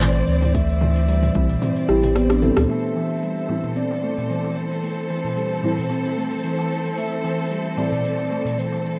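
A ringing, meditative steel tongue drum plays arpeggios through this mystical organic downtempo passage in A minor at 112 BPM with a light 16th-note swing, its delayed, band-limited tone filter-swept from 2.7 seconds. Around it, a breathy flute-like synth lead carries the melody over a rich, bowed string section holding pumping chords, while a dark, warbling chord stab and a round sub bass pulse beneath until the bass stops at 2.7 seconds as the harmony moves from Am7 to Am. An overdriven deep house kit with metallic hats, cabasa, handclaps, rim click and toms, a deep electronic kick that drops out at 1.6 seconds before a drum fill and band accent, and a soft-handed clay darbuka round out this rough, lightly reverberant demo mix.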